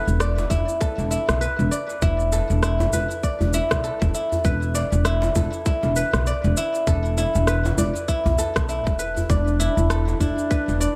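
An echo-heavy mix with moderate spring reverb gives this organic downtempo excerpt a mystical glow at 99 BPM in 4/4, with its 16ths swung. Up front, a ringing, silvery guzheng played with fingerpicks spins arpeggios through vintage 12-bit sampler grit and tape echo, over a woody, growly pizzicato upright bass with tube saturation and sidechain pumping. Beneath it sit a tight electronic kick re-recorded in a large room, layered, tape-warm electronic cabasa and rim click, and a distant djembe with metal rattles, and at 9.3 seconds a mellow duduk joins them with scooped, folk-style notes.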